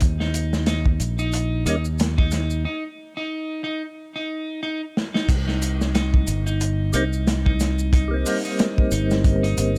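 Brooding and melancholic, this trip hop excerpt rides a swung, saturated breakbeat kit with dark cymbals and a tight kick up front beside a punchy fingered electric bass, while maracas sit close and dry in the background, a clean picked electric guitar plays arpeggios coloured by vintage sampler grit and tape echo from 0.2 seconds, and a mellow, round tonewheel organ with slow rotary speaker, tremolo and tape echo appears briefly at the start, then returns at 6.9 seconds after a break that begins at 2.7 seconds.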